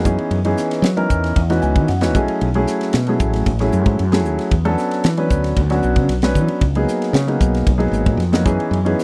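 Electric jazz fusion at 114 BPM in a straight 4/4, this short clip from a longer piece feels slick and soaring. A dark, mellow baby grand piano sits up front, its long sustain spreading over suspended thirteenth chords that move from Gb13sus4 through B13sus4, E13sus4 and Db13sus4 before returning to Gb13sus4. The piano also slips in a brief fill between 1.4 and 2.4 seconds. Underneath, a woody fretless electric bass offers a round, hollow-body tone, direct and amped, while a crisp fusion drum kit adds a high-tuned snare, punchy kick, hi-hat and ride cymbal with an airy, polished studio-room character. The dry, close recording has a 1970s studio flavour, keeping the trio intimate and immediate.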